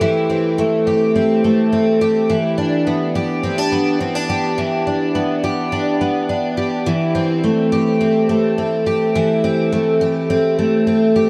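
A straight 4/4 pulse at 105 BPM carries this melancholic, haunting dream pop excerpt in A minor, tuned slightly sharp to A4 = 441 Hz. A picked twelve-string acoustic guitar plays alone and up front throughout, its full-bodied, octave-doubled tone shimmering under a subtle chorus as it moves from Am7 to Em7 at 2.3 seconds and back to Am7 at 6.9 seconds. A huge, wet ambient reverb with a long decay and a dark production cast the whole fragment in a cavernous haze.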